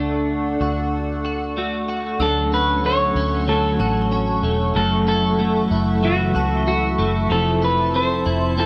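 Ethereal and dreamy, this dream pop excerpt drifts at 94 BPM in D major, moving from Dmaj7 to F#m7 and then Fmaj7 under a wet plate reverb. An up-front, hollow-body semi-hollow electric guitar carries the melody with harmonic tremolo and delay, over bright, compressed arpeggios from a clean electric guitar with ensemble chorus and delay, an airy, flute-like pad with chorus, and a round, punchy, foam-muted electric bass. At 2.2 s a dark, fingered electric guitar with tremolo and subtle chorus enters in the background, joined by a glockenspiel struck with soft plastic mallets, its bell-like tones trailing delay.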